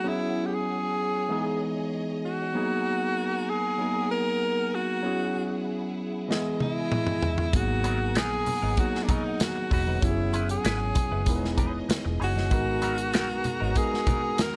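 A breathy, whispered tenor saxophone carries the melody up front in this smooth, cinematic slice of lush 1970s-style soul, its intimate, jazz-style solo line full of vibrato and scooped notes. Beside it, a bright tine electric piano, lightly overdriven through a combo amp, plays accompaniment over a circling progression of F#9sus4, Emaj7 and G#m9, while a warm studio string section holds bowed, even chords in the background. At 6.3 s an acoustic drum kit arrives with a fill, bringing a punchy kick and medium-tuned snare. At 7.5 s a dark, round, foam-muted fingered bass joins with very quiet, low-tuned congas, and a direct-recorded clean guitar soon adds a twangy, compressed, scooped riff through a wah. Light small-room reverb gives the whole excerpt a close, polished sound, and the music is cut from a longer piece.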